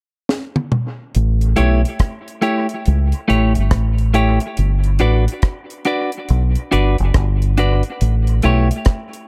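Warm and uplifting, this roots reggae excerpt in A mixolydian moves at 70 BPM with a swung 16th feel, opening on a dry acoustic drum fill with a high-tuned snare and tight kick at 0.3 seconds before a dark, round, punchy fingered dub bass arrives at 1.2 seconds and a clean, picked, compressed electric guitar with tape echo joins at 1.6 seconds, all three up front over A7 and Gmaj7 chords in an echo-heavy mix with light reverb and small-room ambience.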